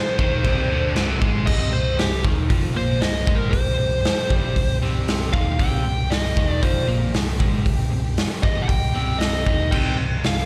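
Heard through a venue's PA with recital-hall reverb and small-room ambience, this cathartic, dark stretch of quiet-loud alternative rock is cut from a longer piece. A fuzz-drenched lead guitar with slapback and tape echo carries the melody and takes a solo from 1.5 seconds, over a very quiet bowed string section holding lush, expressive chords with vibrato and portamento. Beneath them an overdriven guitar plays a riff, a bright high-gain guitar adds its own riff in the background at the start and again from 9.7 seconds, a round, hollow-body short-scale bass anchors the low end, and a gritty, saturated garage kit sits up front with punchy kick, snare, hi-hat and crash in a pumping stone room.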